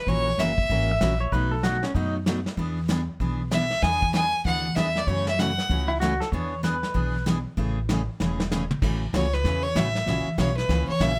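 Set in light reverb, this cheerful, swinging western swing excerpt in A major at 192 BPM pairs a clear, biting fiddle melody with twangy, compressed pedal steel lines played with fingerpicks and volume swells, over a bright, full-bodied picked jumbo acoustic guitar, thumpy, woody upright bass and a dark, smooth brushed drum kit whose fill at 8.2 seconds leads into a fiddle solo from 8.8 seconds.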